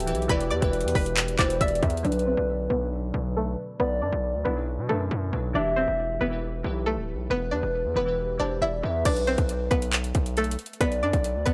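Melancholic, hard-hitting trap at 137 BPM in a half-time feel in B phrygian, built on a distorted, heavy 808-style bass and a twangy, bright string-like resonator pluck carrying the melody with chorus and phaser, while a smooth gliding portamento lead with vibrato and analog delay adds a mellow second line. Glassy, detuned digital keys supply accompaniment and drop out at 9.1 seconds, and a resonant, wave-folded pad sustains chords in the background only through the first 2.0 seconds. The up-front trap kit with its hard-clipped kick, metallic hats, handclaps and crash cymbal falls away at 2.3 seconds during a filter sweep and returns at 9.1 seconds, all captured in a dry, gritty hardware sound with transformer saturation.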